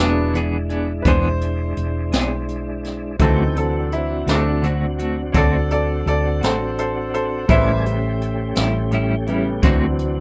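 A bright, woody upright piano takes the solo in this gritty, rollicking slow blues in 12/8, its action noise audible in an intimate, up-front sound as the chords move from E7 through D7 and A7. Beneath it, a clean electric guitar with tremolo, a smooth tonewheel organ through a slow rotary speaker and chorus vibrato, and a round, dark, hollow-body short-scale bass fill out the accompaniment. A roomy brushed drum kit with a boomy kick and high-tuned snare enters at 0.3 seconds, all captured in a rough home-demo mix with little reverb in this excerpt from a longer piece.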